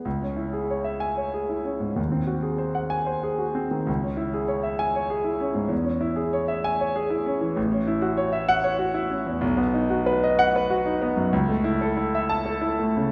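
In a rubato triple metre, this passionate yet hopeful fragment of a romantic classical character piece features a solo concert grand piano, warm and smooth with a deep bass and a vintage, up-front tone, played in a recital hall whose lingering reverb surrounds its chords across the full 13.1 seconds.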